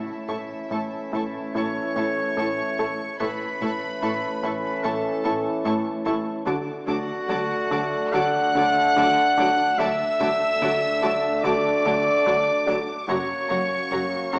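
A straight 4/4 pulse at 73 BPM carries this tense, uneasy suspense film cue through chords of A, D and F#, where a clear, floating sul tasto violin section sings the melody over a breathy, up-front clarinet second line, a distant horn section and a bright trombone section holding sustained chords, and a punchy, plucky analog bass riff tinged with ring modulation, while from 0.3 s a rich, distant second violin line joins soft-edged, dark violas and double basses in the background and a dark, close, very quiet cello section, all bathed in concert hall reverb and the worn, warbling pitch drift of an old cassette heard through a small speaker.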